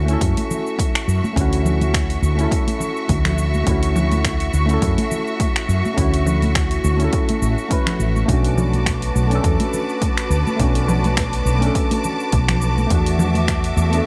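Warm and relaxed, this sunset chillout excerpt moves at 104 BPM in D major with a gentle 16th-note swing, drifting from Dmaj9 to Bm7 at 8.3 seconds and E9sus4 at 12.9 seconds. A growly, up-front fretless electric bass anchors soft, mellow electric-piano-like synth keys treated with chorus and delay, while a lush, biting symphonic string section holds sustained chords roughened by vintage 12-bit sampler grit. A punchy overdriven electronic kick and an overdriven deep house kit of cabasa, congas, finger snaps and hi-hat drive the groove, with bright acoustic congas sitting in the background of a lightly reverberant space.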